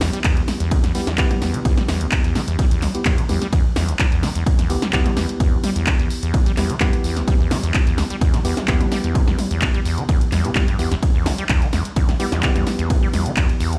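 A squelchy, resonant sawtooth acid bass riff with tube saturation and analog delay drives this raw 128 BPM acid house cut in E minor, alongside worn, slightly out-of-tune tine electric piano stabs through overdrive and delay, a punchy analog drum machine of handclaps, hi-hat, ride cymbal, snare and toms with a tape-warm snare, and an electronic kick from 0.2 seconds, the drums re-recorded in a small room and the mix heard on a big sound system in a bare room with large studio reverb.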